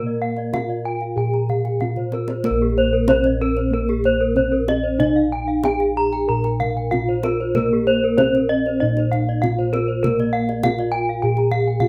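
The pulse falls in four but with uneven beats, giving this short cut from a longer Balinese gamelan piece a brilliant, ceremonial lilt. The melody sits on a bronze metallophone struck with padded disc mallets, its tone dark and smooth, while a second metallophone played with a horn mallet rings out bright, airy arpeggios up front, its paired tuning producing shimmering beats. A third, quieter metallophone adds more arpeggios in the background with a boxy, small-room colour. Underneath, bossed gongs supply a round, beating bass from padded beaters, placed close to the ear. The kendang joins at 0.4 seconds with tight, hard-handed strokes and plays a brief fill at 2.0 seconds, all set in moderate studio reverb within a rough demo-style mix.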